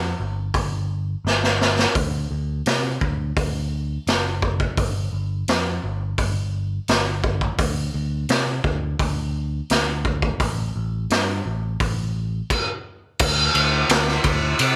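Blues rock power trio and southern rock in a smoky, heavy mood, this brief cut from a longer piece opens on a growly, amped picked electric bass, joined at 0.5 seconds by a raw garage drum kit that sounds saturated, gritty and up front in a small room, with a punchy kick, medium-tuned snare, hi-hat, ride and crash cymbals, a drum fill at 1.2 seconds and a new section arriving at 13.2 seconds, all in a straight 4/4 feel with a dry sound.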